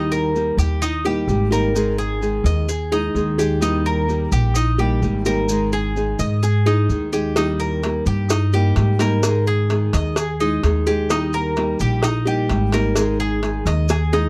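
Danceable and warm, this 128 BPM Cuban son and guajira excerpt in 4/4 rests on an Absus2 chord, with a thumpy, woody pizzicato upright bass up front beside a metallic, double-strung Cuban tres picking arpeggios. A small, fingerpicked nylon-string guitar with old strings fills out the accompaniment while grainy maracas sit in the background, and tight, high-tuned cowbell and bongos played with hard hands join at 7.4 seconds. The excerpt closes with a drum fill at 14.1 seconds. The sound is dry and close, like a 1970s studio recording.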